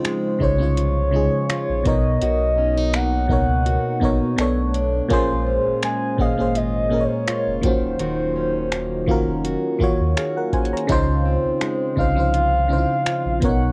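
A small room's modest ambience and the grain of a home cassette recording frame this short, romantic slice of contemporary R&B, moving at 83 BPM in 4/4 with a light 16th-note swing in Db major. Up front, a glassy FM electric piano with bell-like attacks and chorus carries the accompaniment, joined by a booming analog drum machine whose deep kick, metallic hats and finger snaps sit close and tape-softened. A fingerpicked plugged-in steel-string acoustic guitar with fresh strings spins full-bodied arpeggios, while a sawtooth pad, detuned and very quiet, holds sustained chords underneath. From 0.4 seconds a sine sub bass with an added octave lays down a deep, mellow foundation, and a smooth gliding lead with vibrato and portamento sings the melody high above. The harmony drifts from Dbmaj7 through Cbmaj7, Cbm7, Bbm7 and Ebm7 before settling back on Dbmaj7 at 10.9 seconds, keeping the mood silky and tender.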